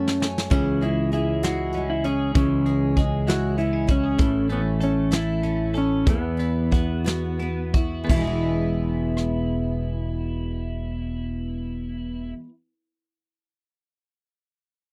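A dry, close 1970s-style studio sound frames this short excerpt of a romantic, tender six-eight pop ballad, with a soft brush drum kit up front that opens on a fill, its dark cymbals and punchy kick sitting in a small, natural room before the kit drops out at 9.3 seconds. An up-front electric slide guitar, slightly broken-up and compressed, carries the melody over a growly, sustaining fretless electric bass and a double-tracked, full-bodied fingerpicked steel-string acoustic guitar. A bright, twangy twelve-string electric guitar adds arpeggios through spring reverb from 0.5 seconds, and the music slows from 4.2 seconds as the chords move from A to Esus2 and settle on E.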